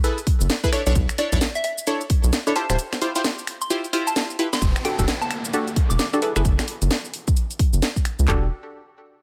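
Dry, up-front and punchy, this moody, skippy two-step UK garage excerpt at 131 BPM swings on detuned, wave-folded chord stabs with chorus and delay moving through F#m11, Bm11 and Em11 over a rubbery, dark square bass, while a house kit of cabasa, finger snaps, warm hats and cracking snare runs alongside layered handclaps and a kick that drops out at 2.8 seconds before a drum fill, a gritty 12-bit square pluck melody enters at 1.2 seconds, and a downlifter arrives at 4.6 seconds.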